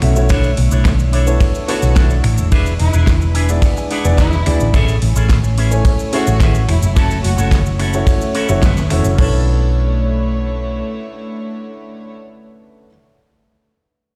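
A groovy, sleek nu-disco excerpt opens with an intimate grand piano carrying tape echo, a bright chamber string section in the background with sidechain pumping and vintage 12-bit sampler grit, a round, punchy hollow-body bass up front, and a layered pop kit with a fat snare and metallic hats, joined at 0.3 s by a tight acoustic kick. A twangy envelope-filtered electric guitar riff rides lush chorus and tape echo, clean guitar fills cut in, and a smooth, vibrato-rich violin section carries a dub-echoed melody from 1.7 s to 7.5 s over chords moving from Bm11 through E7 to Amaj7. A band accent lands at 8.6 s before the drums stop at 9.3 s, all heard through a stone-room reverb as if played on a big sound system.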